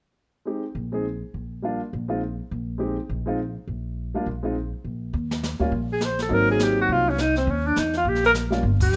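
Relaxed and sophisticated, this small-group swing and bop fragment opens with an intimate grand piano, its action noise audible, over a woody pizzicato upright bass, before an airy brushed drum kit with a boomy kick enters at 5.1 seconds and a subtone alto saxophone with vibrato takes the solo melody at 5.9 seconds, the band landing a shared accent at 8.8 seconds under a light reverb.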